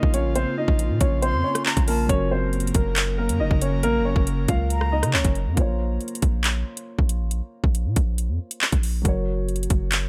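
A half-time drill groove of overdriven, up-front drums with a hard-clipped kick, metallic hi-hats, handclaps and rim clicks drives this ominous, cold hip hop excerpt over a deep, mellow sine 808 bass, while a dark, low-pass-filtered grand piano carries a delayed melody until 5.3 seconds above a boxy, intimate piano accompaniment with audible action noise, an airy, detuned pad with chorus holds sustained chords through the opening half, and a breathy silver flute with vibrato and delay adds brief second-line phrases from 1.2 seconds.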